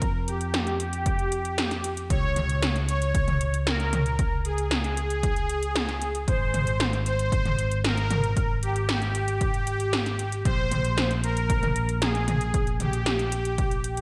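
Driving and nocturnal, this synthwave excerpt moves at 115 BPM in a straight 4/4, cut from a longer piece and tuned slightly under standard pitch. Up front, a soft supersaw carries the melody between G4 and Db5, its smooth, airy detuned tone colored by a phaser and a digital delay. Beneath it, a bright picked electric bass with a growly, direct edge holds the low end between Ab1 and F2. The drums pair a punchy, tape-warmed electronic kick, which drops out at 13.7 seconds, with 80s electronic pad drums whose metallic hi-hats, gated snare and toms bloom with gated reverb. The harmony moves from F5 to Db5 at 2.1 seconds and Ab at 6.3 seconds before the chords fall away at 10.5 seconds, all within a light reverb and a gleaming 1980s-style digital production.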